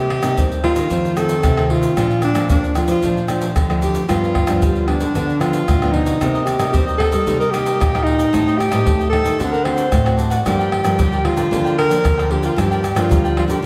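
A large studio reverb of about 1.4 seconds gives this samba and choro excerpt a roomy sound heard from further back, while the breathy alto saxophone and the hard-handed percussion sit up front. Set in G minor at 113 BPM in a straight 4/4 and tuned to A4 = 438 Hz, the mood is yearning and nostalgic. The close-miked saxophone carries the melody between D4 and C5 in an intimate, whispered jazz style, with soft attacks, scooped notes, vibrato and a slapback echo. Two fingerpicked nylon-string guitars with a classical tone fill out the harmony: one plays accompaniment, with audible finger squeak, and the other plays the bass line. Pandeiro, tamborim, tube shaker and a tight surdo drive the groove, and at 6.2 seconds a crisp, picked cavaquinho joins in the background. The harmony moves from Cm7 through F7 and Bbmaj7 to G7, then passes through Am7b5 and D7 to settle on Gm7.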